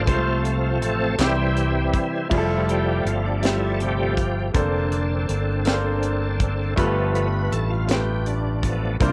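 A small room lends a close, natural ambience to this short cut from a slow gospel piece, moving at 54 BPM in a straight 6/8 in F major with a mood both reverent and jubilant. Up front, a bright tonewheel organ carries the lead with shouting, lightly overdriven chords colored by chorus vibrato and a fast rotary speaker. Beneath it, a clear grand piano supplies intimate accompaniment with audible action noise, while a round, dark fingered electric bass sits low and direct. A tight funk drum kit with a high-tuned snare, crash cymbal, hi-hat and tight kick enters at 0.1 seconds, and a crisp group handclap appears briefly in the background at 1.2 seconds. The harmony opens on F/C and C before settling into lush Fmaj9, Bbmaj9/F and G9 chords from 2.3 seconds onward.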